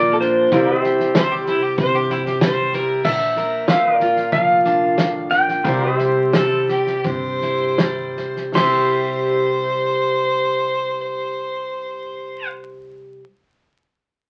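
A warm, twangy pedal steel guitar carries the melody in this easygoing, heartfelt honky-tonk and classic country passage, cut from a longer piece in C mixolydian, moving between Bb and C at 76-95 BPM in a straight 4/4 and slowing down from 3.0 to 8.6 s. A second, brighter pedal steel holds sustained chords with fingerpicked slide and volume swells, while a clear, biting fiddle with light vibrato adds an up-front second line from 1.1 s. A full-bodied jumbo acoustic guitar, a woody gut-string upright bass in the background, a punchy natural drum kit that stops at 8.7 s, and a dark, slightly detuned upright piano heard only in the opening seconds sit inside a roomy ambience with the crackle of a very old 78 rpm record.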